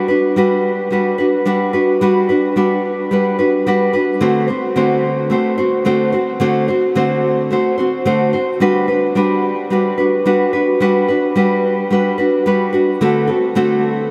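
Easy-going and carefree, this short pop excerpt features a lone nylon-string guitar, fingerpicked in a classical manner and placed up front with analog delay and audible finger squeak, moving between Gmaj7 and D7 chords in a straight 4/4 feel across roughly 14.1 seconds inside a dreamy mix soaked in a huge ambient reverb.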